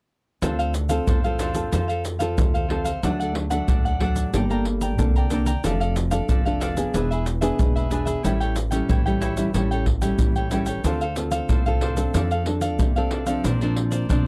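A samba and choro excerpt in D minor at 92 BPM, lively and yearning, with a cavaquinho, a fingerpicked nylon-string guitar, a pizzicato upright bass and a percussion group of egg shaker, surdo and pandeiro all playing together from 0.4 seconds. The percussion sits up front, its deep surdo compressed and saturated, while the woody, steel-strung bass supports the crisp picked cavaquinho and classical guitar over chords moving from Dm7 through Gmadd9, E7 and A7 to Bbadd9. The production is dark and warm, with little reverb.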